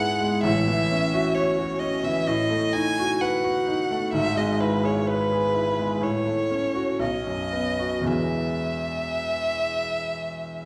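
A single bowed violin carries a tender, serene melody with a clear, focused tone and vibrato, sitting up front throughout the 10.7 seconds of this romantic classical duo. Beneath it, a brilliant grand piano supplies an accompaniment ranging from deep bass to the middle register, moving through a rubato progression that settles on an E major chord at 8.1 seconds. Both are heard from further back in a recital hall with a lush, reverberant tail, in a passage cut from a longer piece.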